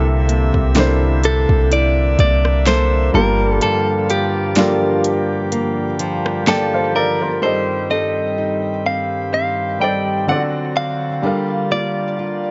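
A bright, clean electric guitar carries the melody up front from 1.2 seconds in this slow, longing, late-night contemporary R&B piece in G minor at 63 BPM, cut from a longer work. Beneath it sit a soft, felt-muted upright piano, a nasal cornet stop on pipe organ holding sustained chords, and a small fingerpicked nylon-string guitar with audible finger squeak. A deep 808-style bass stops at 3.6 seconds and an overdriven electronic drum kit with a fat snare drops out at 6.7 seconds, all heard through the warble and pitch drift of worn cassette tape with light studio reverb.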